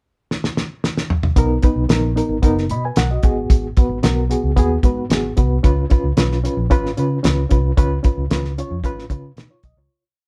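Heard as a band playing live in one modest-sounding room, this short, joyful 1960s-style soul piece opens with a thuddy, cloth-damped drum fill at 0.3 seconds. At 1.4 seconds the drums settle into a backbeat groove with a fat snare and tight kick, joined by a round, foam-muted fingered bass playing a melodic, syncopated line with chromatic approach notes, and a reedy, slightly out-of-tune electric piano with fast tremolo pumping eighth-note chords and short fills through its built-in speakers, before a fade-out beginning at 7.8 seconds.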